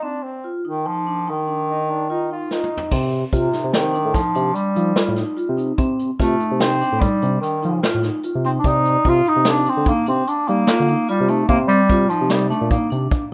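Intricate and brooding, this progressive instrumental in 7/4 at 147 BPM in C dorian opens with a flugelhorn line with light vibrato and scooped notes over ringing vibraphone arpeggios, joined at 0.7 s by a clear, roomy bass clarinet with delay. At 2.9 s, a brush drum fill starting at 2.5 s leads into the bass clarinet's solo, backed by the brush kit's dark cymbals and punchy kick, a smooth sawtooth synth bass and the metallic vibraphone, all set in a rough home-demo mix with a small, wet room sound.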